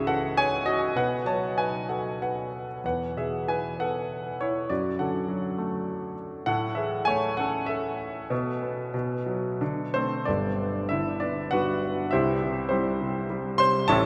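A solo grand piano opens the fragment, its tone warm and up front, ringing into a vast, echoing space with a wet cathedral reverb that lingers for about 5.5 seconds. This is lyrical classical piano in 3/4 time, with a rubato feel that lets the tempo drift between 85 and 103 BPM. The mood is bittersweet and brooding: the harmony begins on C-sharp minor before moving through B, E, D over F-sharp and A, settling in E major. At 10.3 seconds the music turns toward G major, where a Gadd9 chord arrives before moving to C. The piano spans a broad range from G1 up to C6, and its present sound stays close even as the long reverb surrounds it until the fragment ends at 14.1 seconds.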